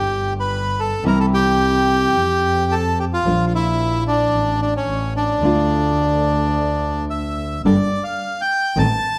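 A large studio's wet reverb surrounds this passionate, melancholic tango fragment, cut from a longer piece and moving with a rubato feel in 4/4. Up front, a reedy, smooth bandoneon carries the melody from the start, over a single bowed double bass that sounds earthy and distant with light vibrato. At 1.0 seconds a dark, fingerpicked nylon-string guitar joins with a deep classical tone and audible finger squeak, and at 7.7 seconds the music moves into a brief new section.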